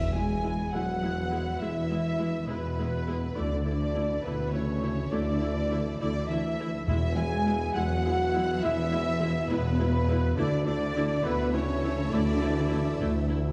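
A huge, dark impact and a round timpani hit open this triumphant, majestic cinematic passage at 68 BPM in 12/8. A smooth violin section carries the melody in E mixolydian, joined by an airy, hollow flute group and a distant, lush second violin section on a second line, over sustained chords from dark, roomy French horns, mellow trombones and an expressive string section, with trumpet stabs, bowed violas in the background, and a low end of double basses, portamento cellos and a soft-attack tuba. The harmony alternates between E and Dsus2, with the timpani returning at 6.9 seconds, all set in a dark production with a wet scoring-stage reverb.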